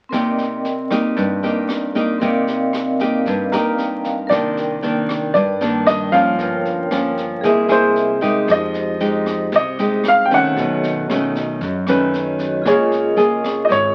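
Fingerpicked classical nylon-string guitar up front, ringing metallic vibraphone with a medium motor vibrato and a small-room brushed drum kit with a high-tuned snare and punchy kick open this wistful, smooth bossa nova excerpt in C minor at 115 BPM, where a vibraphone fill at 3.3 s leads into a warm, open baby grand piano melody with short sustain from 3.5 s and a woody, thumpy pizzicato upright bass in the background from 4.3 s, as the harmony moves through Cm9, Gm7b5, C7alt, Fm9, B9 and Db6 under light reverb and the crackle of a very old 78 rpm record.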